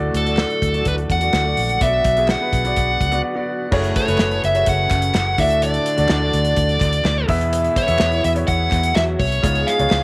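A concert grand piano, a very quiet tonewheel organ with key click and fast rotary speaker, and a round, foam-muted fingered electric bass open this earnest, dramatic piano-driven pop piece in F# minor, moving at 126 BPM in a straight 4/4. A natural country drum kit with dark cymbals, a medium-tuned snare and a punchy kick sets the beat in a small room, while crisp group handclaps sit far back in a large space. Up front, an overdriven, picked lead guitar with a smooth, shadowy tone carries the melody in a high register. After a brief break at 3.2 seconds, the organ falls away at 3.7 seconds and a distant, roomy French horn section enters with a classical-style second line. The chords move from D and Bm to F#madd9, D, E and C#7, and a moderate spring reverb lends the whole mix a gentle sheen in this short section cut from a longer piece.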